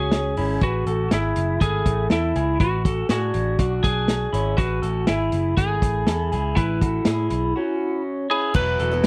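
Jangly indie pop with a nostalgic, youthful feel, this dry, close 1970s-style excerpt sets a bright, twangy lead guitar melody with slapback echo over phased arpeggios from a slightly broken-up electric guitar through a small old amp, a dark, foam-muted picked bass, and a muffled vintage drum kit with a punchy kick, before a shimmering, octave-doubled twelve-string acoustic guitar enters at 8.5 seconds on an Esus2 chord following a break.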